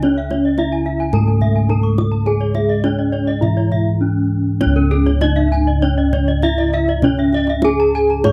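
Round, beating bossed gongs sit up front with the bass line in this brilliant, hypnotic Balinese gamelan passage cut from a longer piece, beneath a dark, smooth bronze metallophone melody struck with a horn mallet, two bright, airy high metallophones ringing out shimmering arpeggios, a mellow, soft background metallophone accompaniment played with padded mallets that stops at 4.6 seconds, and a tight kendang in the background that plays a fill from 4.0 seconds, captured in a dry, close 1970s-style studio sound.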